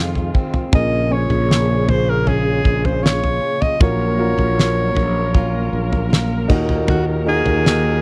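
A straight 4/4 pulse from a damped, dry 70s drum kit with a fat snare and tight kick, entering at 0.2 s, carries this emotional, longing pop ballad fragment, where a growly, bright fretless bass sits up front beneath a deep-bassed concert grand piano, a very quiet fingerpicked jumbo steel-string guitar playing arpeggios and a dark, veiled con sordino string section holding sustained chords in the background, while from 0.7 s a breathy, whispered alto saxophone with a soft attack and slapback echo sings an intimate solo melody over chords moving from Bbm7 to Gbmaj7/Bb and Ebm in a close 1970s-style studio sound.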